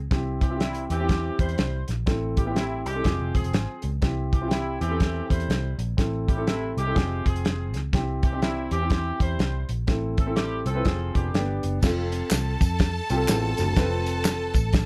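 A dark, round, foam-muted electric bass opens this joyful, danceable 1960s-style soul cut at 123 BPM with a swung feel, joined almost at once by a woody upright piano with audible action noise and a dry, warm drum kit with dark cymbals and a tight kick, while a vintage horn section with light vibrato carries the second line over C, Am and Fm changes until 11.6 seconds, and at 11.8 seconds a lush, bright bowed violin section, a breathy subtone baritone saxophone riff sitting in the background, and close tambourine and group handclaps arrive as the harmony moves to F, all under light reverb.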